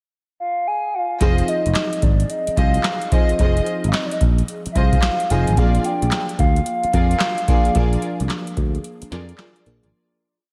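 This is a short, complete new jack swing R&B piece with a slick, bouncy mood and a hard-swung groove. A hollow, woody synth lead with a clarinet-like tone opens alone at 0.4 seconds with a short pickup of call-like motifs, sitting up front with vibrato, chorus and slapback echo. At 1.2 seconds the rest of the band arrives: a booming analog drum machine with a deep kick, tonal snare layered with handclaps and metallic hi-hats, given a tape-warm, gritty 12-bit sampler edge, alongside a picked electric bass playing a growly, punchy swung line with muted ghost notes. An FM electric piano layered with a soft pad pushes lush, dreamy chords through chorus, phaser and slapback echo, while a studio string section adds short syncopated bowed stabs with vibrato and tape echo. The harmony moves from Fm7 to Bb7 at 5.6 seconds, and a fade-out begins at 7.8 seconds as the music drops into a brief break before ending, all bathed in light digital reverb.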